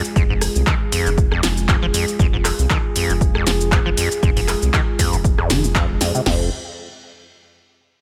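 A swung 16th-note groove in 4/4 drives this hypnotic acid house passage, cut from a longer piece and opening directly in a drop that runs to 6.3 seconds. Two punchy analog drum machines carry the beat: one, up front and tape-warm with a short room on snare, clap and hats, plays handclaps, hi-hat, rim click, shaker and snare. The second, entering at 0.2 seconds, adds a punchy kick, snare, toms and crash cymbal with a tape-warm tone. A squelchy, resonant sawtooth acid bass runs a riff through a filter sweep, its saturated tone thickened with chorus, overdrive and delay. Beneath it, a round, deep bass of sawtooth and sine pumps with sidechain compression, while a moody analog pad with a sub octave holds sustained F minor chords, colored by chorus and phaser and pumping in the same way. The mix is dry and close, giving the driving track a tight, immediate feel.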